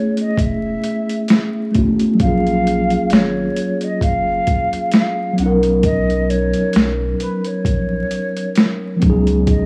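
Nostalgic and cosy, this lo-fi hip hop excerpt in F# major drifts along at 66 BPM in 4/4 with a lazy 16th-note swing. A breathy concert flute carries the melody from the start, its vibrato and crisp attack softened by rolled-off highs and a low-pass filter. Beneath it, an up-front tine electric piano plays clean, warm chords with a cassette-tape character, moving through Amaj9, F#maj9 and Bmaj9 before landing on C#9sus4 at 9.0 seconds. A gritty, pitched-down boom bap drum kit enters at 0.2 seconds, sitting forward in the mix with a thumpy kick, high-tuned snare and hi-hat, all compressed in a sampler style. A deep, full sub bass with an added octave joins at 0.4 seconds, its sine and triangle tone sustained and mellow. Light reverb, vinyl crackle and a small-room ambience wrap the sound in a dusty, intimate haze.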